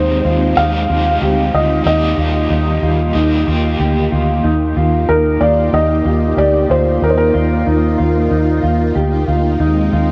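A straight 4/4 pulse at 93 BPM carries this blissful, ethereal dream pop fragment in Eb major, its chords moving from Abmaj7/Eb to Ebmaj7, where a round, foam-muted fingered bass sits up front beneath sustained sawtooth string-machine violas with ensemble chorus and a dark, clean electric guitar fingering delayed arpeggios. A felt-muted upright piano carries an intimate melody through digital delay until 8.9 s, while a crunchy overdriven guitar with tremolo and lush chorus adds accompaniment only until 5.0 s, and a very quiet glassy harmonics texture drifts in from 5.3 s. Everything sits in a huge ambient reverb and a worn, warbling cassette tape sound with wavering pitch.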